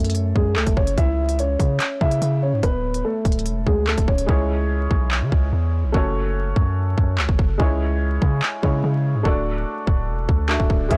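Cold and dark, this short cut from a longer drill track moves at 145 BPM in a half-time feel, set in C# phrygian over a brooding progression that circles F#m, C#m and D. A dark concert grand piano carries the melody up front for the opening 4.2 seconds, its boxy, low-passed tone heavy in the bass, before returning for a brief moment at the very end. From 4.3 seconds a felt-muted upright piano takes over as accompaniment, soft and intimate with thin felt and audible action noise, also filtered to a hushed, muffled sound. Beneath it all, a long sustained 808-style bass runs throughout, a deep sine tone with a fast attack that then decays, sitting prominently in the mix. The electronic drill kit stays up front with a hard-clipped kick, crisp hi-hats and handclaps, though the hats drop out from 4.3 to 10.9 seconds. The recording is dry, blown-out and overdriven, with vinyl crackle adding grit to the bleak atmosphere.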